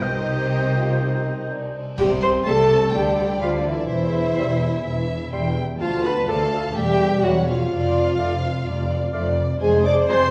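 This playful, whimsical film cue opens with strings, woodwinds and horns together, a magical, mischievous passage at 126 BPM in a straight 4/4, tuned slightly high to A4 = 441 Hz. A rich, expressive violin section carries the melody with vibrato, while a second violin section, a hollow, airy flute group, a distant oboe and a very quiet clarinet weave secondary lines around it. Underneath, a smooth, even viola section and a soft-attacked bassoon fill in the accompaniment, a mellow French horn section holds sustained chords in the background, and warm cello and double bass sections anchor the bass, the cellos with touches of portamento. At 2.0 seconds the ensemble lands a sharp accent as bright clash cymbals and concert bass drum strike briefly, marking the start of a new section whose harmony wanders from a bare C fifth through diminished colours toward D minor. The sound sits on a wet scoring stage with a 1.9-second reverb tail, overlaid by the worn, warbling pitch drift of old cassette tape, which gives this fragment of a longer piece a faded, nostalgic charm.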